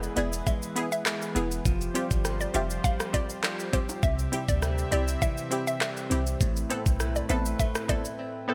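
A short, sunny and bouncy dancehall excerpt in C major at 101 BPM opens with a smooth, detuned analog pad pumping under sidechain with chorus and tremolo, a bright, twangy clean electric guitar picking arpeggios, a deep, boomy 808-style bass, close and dry maracas and timbales in the background, and an up-front electronic drum kit with a knocking kick, metallic hats, handclaps, rim click and shaker in gated reverb. At 0.2 s a hollow square-wave pluck carries the melody through chorus and digital delay, while a punchy, detuned sawtooth chord stab fills in over the changes from E through Fsus2 and C to Amadd9. The bass stops at 7.5 s and the drums cut out at 8.2 s, leaving the pad, guitar and synths to ring in a bright, 1980s-style digital mix with light reverb.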